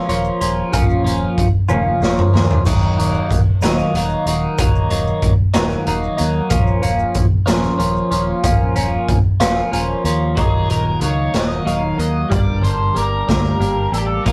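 Moving in a slow, straight 6/8, this dark and mysterious psychedelic rock excerpt opens on a clean, compressed twelve-string electric guitar riff coloured by phaser, sitting up front over shifting minor harmony. A fingered electric bass, round and direct, underpins it while a raw garage drum kit plays with a boomy kick, dark cymbals and a gritty, saturated, pumping small-room sound, dropping in a fill between 1.7 and 2.7 seconds. Very quiet, grainy maracas sit close and dry in the background until 9.6 seconds. At 10.4 seconds an octave-fuzz lead guitar enters with a distorted melody through wah, its tone dark and fuzzed as the harmony moves toward a G minor chord. The whole take has the rough feel of a rehearsal-room recording with moderate booth ambience.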